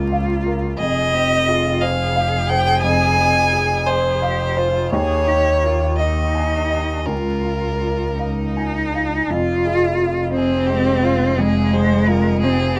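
In a rubato 6/8 sway, this melancholic, fragile neoclassical fragment sets a bowed violin melody with focused vibrato and a smooth top, entering at 0.8 s, over an expressive cello line that glides with soft-attacked portamento, a dark, worn baby grand piano accompaniment with long sustain, and a lush, evenly bowed double bass, all close in a small booth-like room beneath a prominent layer of vinyl crackle.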